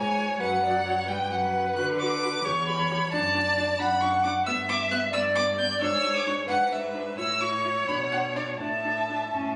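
Cheerful and lively, this short excerpt from a quick classical-period string quartet movement flows at 88 BPM in a rubato 6/8, with a focused violin singing the melody high up front, a dark, woody second violin adding its line, an expressive viola with portamento filling in accompaniment, and a rich, even cello anchoring the bass, all played with vibrato in a moderate recital hall reverb captured on a phone with added studio reverb and compression, moving through chords such as D, G, E7/G# and A before arriving at Asus4.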